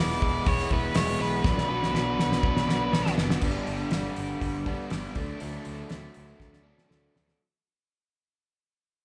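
A dark, fuzz-drenched lead guitar opens this brooding, driving classic rock excerpt, picking a short melody over a double-tracked, overdriven rhythm guitar riff that sits up front in the mix. A bright, growling fingered bass with overdrive holds down the low end, and a dry, damped 70s drum kit joins almost at once, with a fat snare, a tight kick, hi-hat and crash cymbal. The drums play a fill that runs through the close of the opening passage, and the lead guitar stops at 3.1 seconds. From 3.4 seconds the band moves into a new section over G and D chords, following the earlier E and Bm, as the whole recording begins to fade out. A final drum fill arrives at 6.4 seconds. The group sounds as if it is playing live together in one large studio room with moderate reverb, giving the straight, steady groove a solid, present feel.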